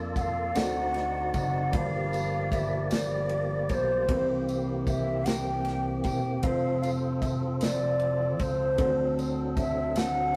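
A woody, slightly detuned upright piano sits in the background as a fat, lightly overdriven tonewheel organ with key click, chorus vibrato and a slow rotary speaker holds sustained chords and a punchy, amped slap bass opens this hopeful, jubilant slow gospel excerpt in 6/8 at 51 BPM in F major. At 0.2 s a breathy, hollow bamboo bansuri enters carrying the tongued melody with vibrato, alongside a studio drum kit of punchy kick, medium-tuned snare and bright ride cymbal and a distant, jingly tambourine, the ensemble sitting in a moderate stone-room reverb with a rough rehearsal-room character.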